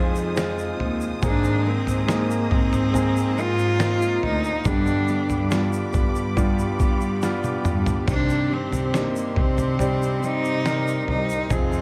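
A lightly reverberant studio sound frames this longing, heartbroken pop ballad in C minor at 70 BPM, cut from a longer piece, where a warm concert grand piano with deep bass, a very quiet fingerpicked dreadnought guitar, a distant lush string section, a floating chamber cello section on the bass and a grainy shaker in the background carry Fm7, Abadd9, G and Cmadd9 beneath a smooth, up-front solo cello melody with vibrato that enters at 1.3 seconds, while a gritty, pitched-down sampler-style trip hop kit with a thumpy kick plays a drum fill at 7.2 seconds.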